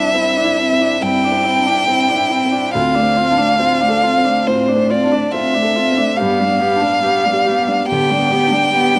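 A rubato pulse of 70 BPM in 4/4 sets the pace for this brief, melancholic and fragile neoclassical passage for piano and strings in D dorian, cut from a longer piece. A solo violin carries the melody up front between C5 and G5, its tone warm and airy-bowed, played sul tasto with vibrato and a soft attack. Beneath it, a single cello in the background sings a dark second line from G3 to E4, intimate and smooth at the top, while one viola adds a woody, sul tasto accompaniment with vibrato. A felt-muted upright piano gives a mellow, intimate bed spanning C2 to A4. All four parts play throughout the 9 seconds, moving through Cadd9, Dm7 at 2.7 seconds and G at 6.2 seconds, and the close-miked strings sit in light reverb and studio ambience.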